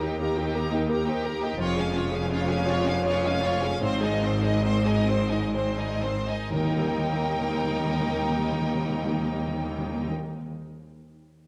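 Timpani struck with hard mallets on calf heads enter up front at 6.5 seconds, adding an articulate punch to this hopeful, moving cinematic passage in Eb major, played rubato in 6/8 at around 40-58 BPM and slowing between 0.6 and 6.5 seconds. Bowed violin sections carry a rich, vibrato-laden melody and second line over a lush viola section, a focused cello section and a close double bass section. Meanwhile, a very quiet concert harp rings out fingerpicked arpeggios and a felt-muted upright piano plays soft, dark accompaniment in the background until 11.5 seconds, as the chords move from Eb through Db/F and Ab back to Eb in a moderate scoring stage reverb.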